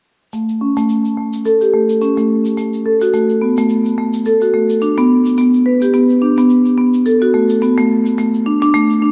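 A 16th-note swing of 57% in 4/4 at 107 BPM carries this earthy organic downtempo fragment in B minor, tuned to A4 = 445 Hz, where a dark, smooth marimba struck with medium hard mallets sits up front playing arpeggios between A3 and B4, shaped by a low-pass filter sweep and digital delay, while a much quieter, produced-sounding cabasa, overdriven and re-recorded in a small room, supplies the percussion from 0.3 to 9.0 seconds, the whole mix set in a moderate concert hall reverb with a big arena sound.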